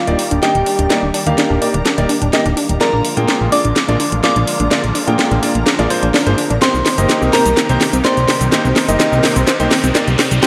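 A straight 4/4 pulse drives this uplifting, expansive progressive house passage, its layered electronic house kit sitting up front with a cracking snare, metallic hats and cabasa, while a drum fill runs through the whole build-up. Beneath it, a punchy, funky plucky analog bass with a wave-folded, ring-modulated edge holds the low end, as an evolving supersaw swell in the background sustains the Ebmaj7, Bb7 and Cm7 chords. Stabs from a clear concert grand piano with deep bass are roughened by vintage 12-bit sampler grit, low-pass filtering and dub echo, and a glassy, crystalline FM bell carries the melody with chorus and dub echo. A round, detuned analog pluck plays arpeggios in the background under a filter sweep, and a very quiet reversed, granular, dreamy texture enters at 0.2 s. A faint riser arrives at 9.6 s, and the whole mix sits in a lush hall reverb with a dark production sound.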